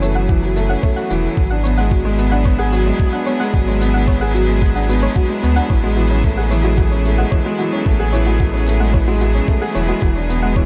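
A worn, woody upright piano, slightly detuned and up front, carries a riff through this melancholic, hypnotic piano and strings electronica excerpt at 111 BPM in a straight 4/4. Beneath it a deep sine sub bass with tube saturation pumps against a muffled, thumpy electronic kick that enters at 0.3 seconds, while a layered electronic shaker runs until 10.4 seconds. A distant string quartet, bowed one player per line with smooth vibrato, holds sustained chords that also pump with the kick and bloom in shimmer reverb. In the background a soft pluck blending triangle, sine and sawtooth tones with a noise layer spins chorused arpeggios through tape echo, and the piano shares that echo and shimmer. The harmony moves from F#m7 to G#m7b5, then settles on Amaj7 before turning to E7. The production is dark and warm, with light reverb and a digital ambience.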